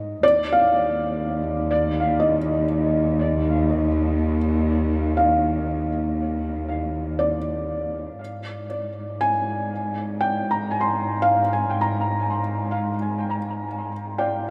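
A straight, unhurried 4/4 pulse at 60 BPM carries this peaceful, serene ambient excerpt in Eb major, where a soft, felt-muted upright piano spins intimate arpeggios between D5 and C6 through a tape echo over a dark, woody bowed cello section holding the bass with vibrato between Eb2 and Ab2, both parts fading out across the full 14.5 seconds as the harmony moves from Ebsus2 to Ab6 at 8.2 seconds, all bathed in a vast cathedral reverb.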